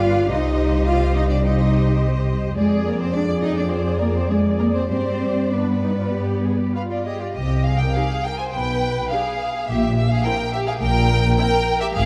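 Together from the start, a string orchestra plays a quick, restless and dramatic classical-period movement in C minor at 97-107 BPM with rubato: rich, distant first violins carry the melody over a clear, intense second line, expressive violas with portamento stop at 11.5 s, and a focused cello section and soft-attacked, up-front double basses anchor the bass, all bowed with vibrato in a dark concert-hall reverb as this cut from a longer piece moves into a new section at 7.4 s.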